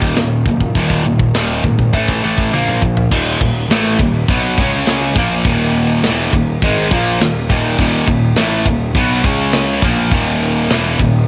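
A sludgy, double-tracked distorted guitar riff opens this heavy, relentless heavy metal piece at 102 BPM in Eb phrygian, joined from the start by a punchy fuzz bass and a tight acoustic drum kit of crash, hi-hat, kick, medium-tuned snare and toms. The guitar sits bright and up front with overdrive, the picked bass adds its own overdrive underneath, and the drums carry a cassette tape coloring. A drum fill at 2.5 seconds leads into a new section at 3.1 seconds, where the chords move between Ebm, Db5 and Eb5, heard in a small room with light reverb on a home cassette recording.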